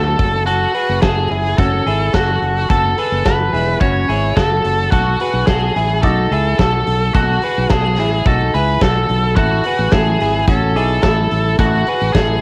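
A home cassette recording with vinyl crackle, light reverb and studio ambience frames this restless, wistful jangly indie pop excerpt in F# minor at 108 BPM, where a biting, overdriven lead guitar with a bright tape-tinged edge carries the melody, a twangy, compressed clean electric guitar picks arpeggios, a dark, round fingered bass sits up front, and a natural big-room rock kit with a fat snare and punchy kick joins at 0.2 seconds over a progression moving from F#m7 to B7 to Amaj7(no3).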